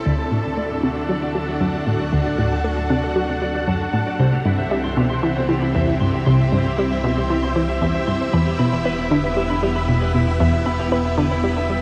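Over a straight 4/4 pulse, this mysterious, cosmic fragment of sequencer-driven ambient space music sets a bright, nasal analog pluck riff with chorus and delay against lush, vintage string-machine chords that sit up front in ensemble chorus, a fat, detuned analog bass thickened by tube saturation and a filter sweep, and dark, slightly broken-up electric guitar arpeggios trailing delay, all suspended in a vast, echoing reverb as the harmony moves from D to C to Em.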